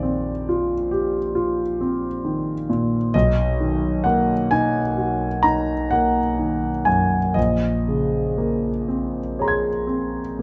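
Wistful and nocturnal, this short excerpt from a longer classical piece unfolds as impressionist solo piano in a slow, rubato 9/8, with the dotted-quarter pulse moving at roughly 39 to 46 beats per minute. A concert grand plays alone for the full 10.4 seconds, reaching from deep bass notes at Bb1 up to Ab6 in the treble. Its tone is warm and intimate, captured by close, detailed microphones that place it up front and let the audible noise of the action come through naturally. The harmony drifts through rich extended chords, moving from Cm11 over a Bb bass to Bmaj7 at 3.1 seconds and settling on Bbm11 at 7.4 seconds. A moderate reverb from a large studio room lends the sound a gentle halo around the close, tactile piano.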